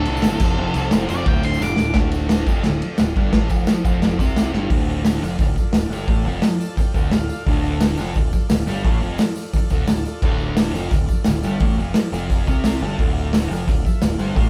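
A straight 4/4 beat at 174 BPM drives this raw, swaggering garage rock cut in D minor, where a dark octave-fuzz lead guitar solos with slapback echo for the first 2.0 seconds over a double-tracked fuzz guitar riff, a growling overdriven picked bass, a punchy, up-front vintage drum kit with dark cymbals and a pumping small-room sound, a reedy overdriven combo organ with light vibrato that holds background chords and adds short fills, and a jingly tambourine, the band playing live together in one room.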